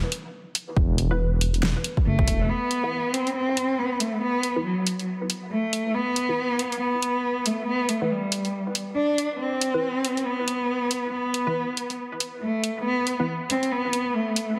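Heavily compressed with a radio-like sheen and a moderate echo-chamber reverb, this cavernous, meditative deep dubstep cut in E minor moves at 139 BPM in a swung half-time feel: an overdriven deep house kit with a fat snare and hi-hat runs throughout, a punchy electronic kick and a rumbling, detuned saw bass enter at 0.8 seconds for only a brief stretch, a filter-swept, muted dub chord stab coloured by phaser, chorus, tape and dub echo joins at 1.1 seconds, and an expressive bowed cello with vibrato and portamento carries the melody from 2.1 seconds, sounding distant and treated with dub echo.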